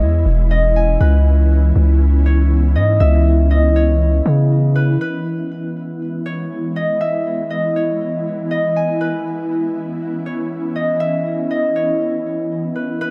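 Dreamy and floating, this atmospheric cloud-rap cut in a half-time feel sets a ringing, fingerpicked concert harp melody with delay over an ethereal, airy pad of detuned, chorused sustained chords, while a deep, sine-toned 808-style bass sits up front until it drops out at 5.0 seconds, leaving the harp and pad to drift in light small-room reverb.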